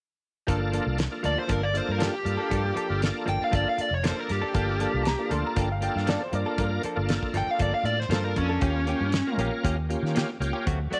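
A band of organ, clean guitar, bass and drums opens together at 0.5 s in this smoky, soulful straight-eighth soul blues in G minor, moving at 118 BPM in 4/4 with a faint sixteenth-note swing. The shouting tonewheel organ carries the accompaniment with light overdrive, chorus vibrato and a slow rotary speaker, while a compressed, direct-recorded clean electric guitar adds picked stabs. Beneath them, a foam-muted fingered bass sits round and punchy up front, and a dry 70s kit drives the groove with a fat snare, tight kick and hi-hat. From 1.3 s a dark, smooth overdriven lead guitar takes the melody, and between 5.0 s and 7.2 s a brilliant, woody upright piano, slightly detuned and full of action noise, slips in a second line in a high register. The harmony rests on Gm9 before shifting to Eb7 near the end of this short cut from a longer piece, all set in a light reverb.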